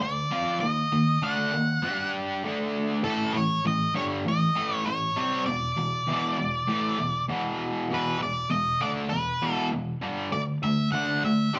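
An octave-fuzz lead guitar carries the melody within a range of A4 to F#5, its dark, fuzzy tone sitting up front through this raunchy, driving rock passage at 99 BPM in a straight 4/4. Beneath it, a double-tracked cranked stack guitar picks a bright, overdriven riff spanning E2 to G4, colored by harmonic tremolo, over chords moving from D5 and D#m through G5 and A7 to E5. Both guitars play throughout the 11.6 seconds, captured as a band live in one room with a moderate large-studio reverb.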